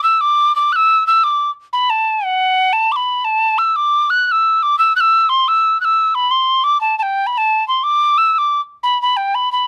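A mellow wooden whistle plays alone, carrying a lively, bright Celtic folk tune in 12/8 at 118 BPM, counted in dotted quarters with a straight feel. Its tone is airy and woody, each note starting with a crisp attack and a breathy chiff, while vibrato colors the line. The melody ranges from F#5 to F#6, played expressively and set up front in the sound. Close, detailed microphones and little reverb keep the whistle dry and intimate throughout this 9.7-second fragment cut from a longer piece.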